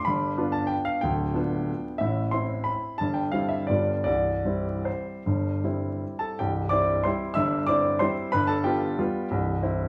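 A clear, polished baby grand piano plays alone and up front through this elegant, playful classical waltz in C major, moving in a rubato 3/4 between 144 and 195 BPM across a range from C1 to E6, with chords turning from G7 through Am and C/G before settling on C at 9.3 seconds, all set in a moderate large-studio reverb with vinyl crackle in this brief cut from a longer piece.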